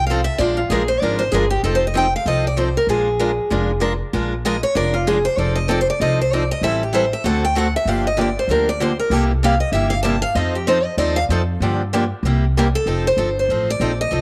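Acoustic string swing in the jazz manouche style, playful and swinging, this excerpt puts a bright, fresh-stringed concert steel-string guitar up front with a melody solo from 0.0 to 12.9 seconds, finger squeak audible, over a boxy parlour guitar picking the accompaniment and a woody, thumpy pizzicato upright bass with dark gut-string tone, set in a moderate spring reverb as the chords move through Bb7, F7 and a Gm7 to C7 turnaround before landing on F7.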